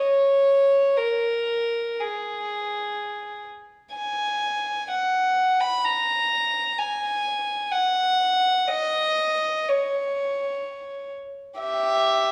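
A lyrical, nostalgic classical fragment for a single bowed violin, taken from a longer piece and lasting 12.3 seconds. The violin sits up front yet sounds pure and floating, with soft attacks and the distant colour of sul tasto bowing. A wet recital hall reverb of 1.3 seconds surrounds the line, captured in what sounds like a church or concert hall.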